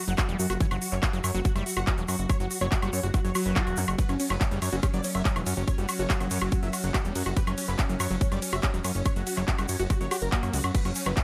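Light reverb and a digital ambience frame this hypnotic, intense psychedelic trance excerpt, which drives at 142 BPM in a straight 4/4. A tight, tape-flavoured electronic kick sits up front beside a fat, detuned analog sawtooth bass. The big-room dance drum kit adds crisp hats, crash, ride, handclaps and woodblock with an overdriven edge, and a grainy egg shaker sits very quietly underneath. In the background, a squelchy, resonant acid bass riff is distorted and delayed, while an evolving wavetable pad morphs through sustained chords with phaser, slow attack and long release. On top, a punchy, full-bodied supersaw stab carries the melody across a range of C#4 to F#5, roughened by 12-bit sampler grit, phaser and dub echo, and it pumps with sidechain compression along with the pad and acid bass. A very quiet formant-sweep wobble bass appears only between 5.0 and 6.7 seconds, and a faint downlifter opens the passage while a swell arrives at 10.1 seconds.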